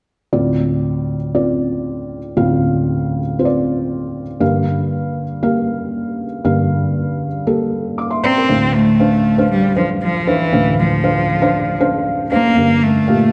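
Pop excerpt, dramatic and earnest, in which a felt-muted upright piano with thick felt, a dark, intimate tone and audible action noise carries Dm7 and Gm7 chords from 0.3 seconds before a single bowed cello, nasal and focused with vibrato, takes the melody at 8.2 seconds, both up front in a wet scoring-stage reverb.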